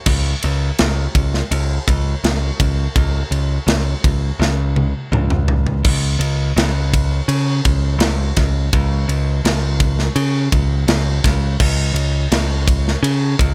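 A bright, punchy picked electric bass and a tight, mid-forward metal drum kit with a rolled-off top start together at 0.1 s, driving a dark, relentless heavy metal excerpt at 83 BPM in straight 4/4, with the bass moving between C#2 and C#3 over crash, ride, snare, kick and toms, both sitting up front in a dry studio room until a drum fill from 4.4 to 5.8 s carries the music into its second section.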